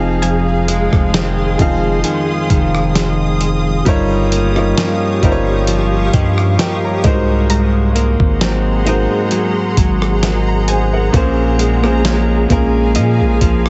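A gritty, sampler-style soul drum kit sits up front from 0.2 s, with a thumpy kick, a fat snare, rim clicks and hi-hat, all with a compressed, small-room character. This moody, sensual contemporary R&B excerpt moves at a slow 66 BPM in 4/4 with a light 16th-note swing, in Bb minor tuned to A4 = 436 Hz. Underneath, a deep, mellow 808-style bass holds long sine notes that decay, while an intimate, boxy grand piano with audible action noise and long sustain carries the accompaniment. A bright, clean electric guitar, recorded direct and compressed, plays picked arpeggios through a digital delay. A cloudy, detuned granular pad holds blurred, evolving chords high above, with its own reverb and sidechain pumping, and a very quiet, woody FM pluck with chorus adds a round mallet texture from 0.2 s. The harmony moves through Fm7, Eb9/G, Ab9 and Bbm7 under light reverb, and the whole mix has a heavily compressed, radio-like sound with its top end rolled off.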